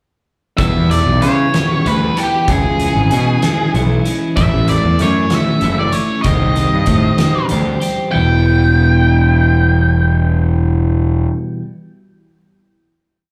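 At 0.6 seconds a fuzzed, overdriven bass riff, growly and up front, enters alongside an oversized, low-tuned drum kit with a boomy kick and fat snare, bright twangy twelve-string electric guitar arpeggios, and a dark octave-fuzz lead guitar singing motif-based phrases through slapback echo. This brooding, quiet-loud alternative rock piece moves in a slow 6/8 at 64 BPM in E dorian, heard as a live gig through the venue's PA with club ambience around it. The drums stop at 8.0 seconds, and the guitars and bass hold a final E minor chord, the lead guitar fading by 11.2 seconds, the bass by 11.3 and the twelve-string ringing until about 11.6 seconds.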